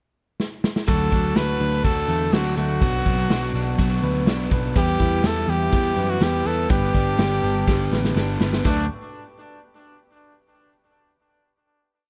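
A dry, close recording in the manner of a 1970s studio frames this youthful, breezy piece of jangly indie pop in D major, moving at 124 BPM in a straight 4/4. A raw garage drum kit opens with a fill from 0.4 seconds, its punchy kick, medium-tuned snare, hi-hat and china cymbal sitting up front with a saturated, gritty character and a rolled-off top as it drives a brisk indie backbeat. At 0.9 seconds the full band arrives for the verse, led by a brilliant, forceful trumpet with vibrato, close-miked and up front, spinning a motif-based pop melody in sentence-like phrases. Beneath it, a twelve-string electric guitar plays a clean, compressed fingerpicked roll pattern touched with spring reverb, while a crunchy overdriven guitar strums folk-style barre chord shapes in the background. A picked electric bass, round, foam-muted and amped, pushes driving eighth notes through the D, Bm, Em and G progression. 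A second drum fill leads into a final D chord at 8.6 seconds that rings out to close the piece.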